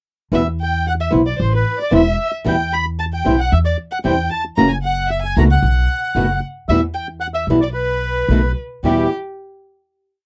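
A dry, close 1970s-style studio recording captures a short, dramatic and passionate tango played with rubato, in which an up-front, reedy, band-limited bandoneon carries a motif-based melody in sentence phrases, an expressive bowed violin with vibrato, portamento and a soft attack adds a rich second line in unison doubling, a fingerpicked flamenco guitar supplies short tango chords, and a woody, dark pizzicato upright bass plays the tango rhythm of uneven groups of three and two eighths before the piece closes on a final chord at 8.8 s.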